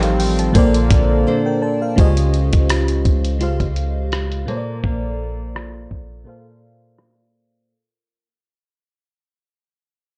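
A dry, gritty recording with a dark low-pass haze opens this smooth, tender R&B excerpt at 84 BPM, where a thumpy, compressed sampler-style kit of kick, hi-hat and rim click and a deep, boomy 808-style bass with tube saturation sit up front beneath a lush, dreamy FM electric piano with chorus, a fingerpicked nylon-string guitar weaving arpeggios through analog delay, and a detuned sawtooth pad with sidechain pumping that stops at 2.0 seconds, as chords move from F9 through Dbmaj9#11 toward a filter sweep and fade-out.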